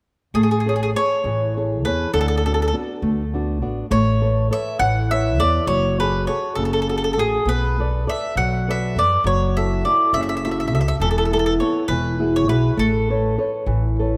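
A lilting 6/8 sway at 68 BPM, counted in dotted quarters with a straight feel, carries this lively, sunny Italian folk serenade in A major, a short passage cut from a longer piece. A round, up-front picked mandolin with doubled strings sings the melody over a warm, thumb-plucked flamenco guitar accompaniment, while a woody, thumpy pizzicato upright bass on gut strings anchors the low end up front with a dark tone. The chords drift from Amaj7 through D6, F#madd9 and Bm7 to an Esus4 before settling on Aadd9 at 12.8 seconds, all wrapped in a moderate concert hall reverb.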